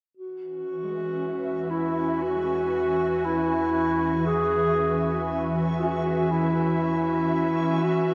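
A mellow, up-front clarinet sings a soft melody over a bright, evolving wavetable pad washed in shimmer reverb, with a reversed, granular texture glimmering in the background, a felt-muted upright piano arpeggiating intimately, and a deep, rumbling drone fading in from 1.6 seconds beneath this luminous, echo-heavy ambient excerpt.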